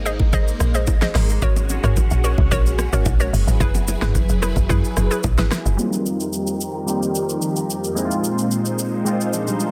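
Soulful and deep, this amapiano excerpt opens on a drop where a woody, punchy log drum bass and a hollow, bouncy square pluck with chorus and delay ride over swirling, vintage string-machine chords, treated with ensemble chorus, phaser, sidechain pumping and a low-pass filter, while close, dry bongos and congas sit in the background. An electronic R&B drum kit with a knocking kick, fat soft-clipped snare, metallic hats, rim click, shaker and toms stays up front throughout. At 5.8 seconds the bass, pluck and hand percussion have dropped out, and round, detuned analog keys with chorus and phaser take over the accompaniment during a filter sweep, all under light reverb and a dense, heavily limited master.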